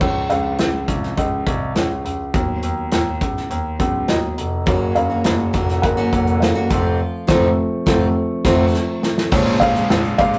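Piano-driven pop in a dramatic, driving 4/4, where a soft, dark felt-muted upright piano leads over a grand piano carrying the deep bass with long sustain and a punchy, up-front country drum kit, joined at 4.7 seconds by a bright, full-bodied jumbo acoustic guitar riff, with a band accent from 7.0 seconds, a drum fill at 8.7 seconds and a background electronic downlifter arriving at 9.3 seconds on a Bbm7 chord, all in a rough rehearsal-room recording with tube saturation and studio reverb.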